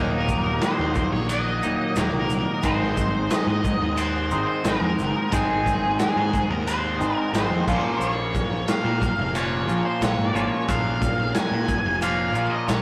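Psychedelic rock at 90 BPM in 4/4, dark and mysterious, this excerpt moves through Ebm, Ab7 and Bbm7. A twangy, clean electric guitar with phaser plays an up-front riff over an overdriven picked bass, while an octave-fuzz lead guitar carries a distorted melody and a very quiet, flute-like tonewheel organ holds sustained chords through a rotary speaker. A raw garage drum kit with a tight kick, snare, ride and crash enters at 0.3 s with grainy maracas in the background, set in a rough rehearsal-room sound with stone room reverb and saturation.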